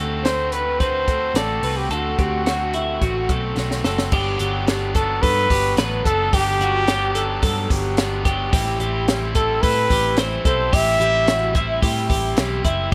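A breathy, whispered trumpet carries the melody with scooped notes and vibrato, its delay-touched line floating over a nostalgic, youthful slice of jangly indie pop at 109 BPM in G major. Twangy, compressed twelve-string electric guitar arpeggios with delay shimmer above a crunchy overdriven rhythm guitar, while a round, foam-muted vintage bass and a compact cocktail kit with a punchy kick, high-tuned snare and dark cymbals keep a straight 4/4 pulse. A drum fill at 3.6 seconds leads the chords from D7 into Gmaj7 and then Am7 under light reverb, in a passage cut from a longer piece.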